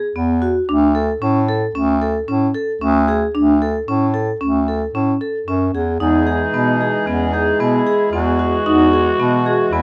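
A restless 5/4 pulse at 113 BPM drives this urgent excerpt of contemporary chamber music, with the vibraphone's metallic, ringing arpeggios up front from the start over a clear, present bass clarinet line in classical style, the harmony moving from E5 to Dmaj7(no3). At 6.0 s the chord turns to Emaj7 as a raspy, growling clarinet enters with light vibrato and scooped notes in a jazz style, while a pedal harmonium adds reedy, breathing sustained chords. The close, detailed sound has little reverb, though the vibraphone carries a boxy small-room tone.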